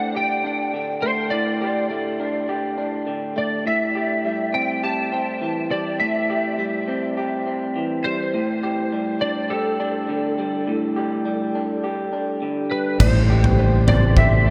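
A darkly tinted, lightly driven lead guitar carries the melody through chorus and tape echo, over lo-fi, slightly broken-up arpeggios from an electric guitar through a small old amp, in a brooding, cathartic post-rock excerpt in A minor at 103 BPM, moving between Dsus4/A and Am7. At 13.0 seconds the arrangement swells into fuller territory as a lush, detuned unison pad, a very quiet felt-muted upright piano, a growling overdriven fingered bass and a huge arena drum kit with a punchy kick, crashes and toms all enter, the drums stopping at 14.3 seconds. A huge ambient reverb soaks the whole mix in a dreamy haze.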